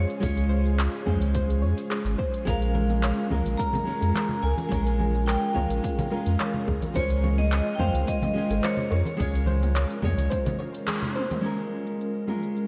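A straight 4/4 groove at 107 BPM sets up this relaxed, wistful sunset chillout piece in Bb minor, cut from a longer track. An overdriven, punchy electronic kick sits in the background beneath an overdriven deep house kit of handclaps, hi-hat, shaker and toms, while close, dry congas and bongos played with soft hands join at 2.8 seconds. The deep, round sine sub bass sits up front, and a classical nylon-string guitar is fingerpicked through tape echo, over an ethereal pad with chorus, tremolo and a slow attack. A dark, gentle pluck with tape echo traces arpeggios in the background. Above them, a bright, metallic vibraphone struck with hard mallets carries the melody with fast motor vibrato. The harmony moves between Dbmaj7 and Bbm7, and a band accent at 10.9 seconds and a drum fill at 11.0 seconds lead into a short closing section, all bathed in a dreamy plate reverb.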